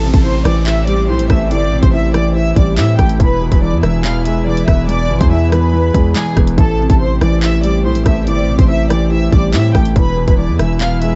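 A faint electronic downlifter opens this dark, ominous drill excerpt in A minor at 142 BPM with a half-time feel, ending at 3.2 s, as a lush, vibrato-rich violin section carries the melody over a mellow, intimate felt-muted upright piano and a distant, floating sul tasto string section holding soft chords in the background. A heavy, aggressive distorted 808-style bass sounds from the start, and from 0.1 s an up-front drill kit of hard-clipped kick, hi-hat, handclaps and rim clicks joins it as the harmony moves between Am7 and E. The production is dark and set in a small room, with vinyl crackle and a dulled top end.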